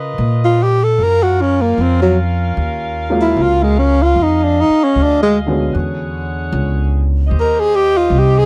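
Swung eighths in 4/4 carry this intimate, tender jazz ballad, where a breathy, whispered tenor saxophone with subtone, vibrato and scooped notes takes the solo melody up front from 0.4 seconds, over a woody pizzicato upright bass, a mellow, distant saxophone section holding sustained chords, and a dark upright piano with audible action noise that accompanies from 3.1 to 7.3 seconds, all in a dry, close 1970s-style studio sound moving through rich chords from Db13 to Eb69.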